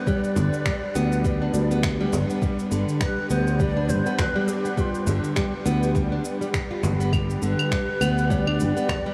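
A growly, punchy fretless electric bass sits up front with sidechain pumping in this hypnotic organic downtempo excerpt at 102 BPM in G major with a lightly swung 16th feel, alongside bright fingerpicked nylon-string guitar arpeggios through analog delay, a breathy low ney melody with expressive vibrato and diffuse ambient delay, a blurred, detuned granular cloud pad in the background, a soft electronic kick, electronic shaker, finger snaps and claves, and a very quiet deep frame drum, the whole mix steeped in a huge, dreamy reverb.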